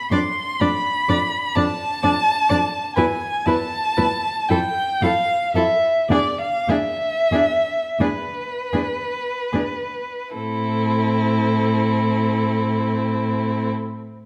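Classical music for string quartet, an elegiac and melancholic slow romantic movement in a lilting compound metre, heard as a fragment cut from a longer piece and played with free, flexible rubato that slows from 1.6 to 10.3 seconds. The first violin carries the high melody up front with soft attacks, vibrato and expressive portamento, while the second violin sings a gentler inner line with similar vibrato and slides. The rich, focused viola accompanies beneath them, and the cello's smooth-topped bass line sits up front before the music settles into a new section at 10.3 seconds, all within a moderate recital-hall reverb.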